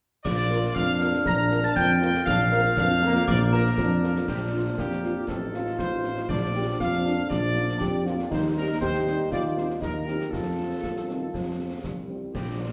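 A wet recital-hall reverb surrounds this short cut from a proud, festive military-style march for wind band, played in a straight 2/4 at 119 BPM in B-flat major. A close-miked trumpet section carries the melody with a clear tone and light vibrato, while a glockenspiel struck with hard plastic mallets adds a ringing, bell-like second line until about 4.2 seconds. Underneath, a dark, distant trombone section holds soft-attacked chords, a tight French horn section fills in the background accompaniment, and an up-front tuba anchors the bass with a mellow, smooth-topped sound and its own light vibrato. Concert snare drum, clash cymbals with bright cymbal tone, and concert bass drum keep the march pulse in a small-room acoustic. At 4.3 seconds a solo euphonium takes up a second line as the harmony moves from B-flat through F7/A and C minor over E-flat to F.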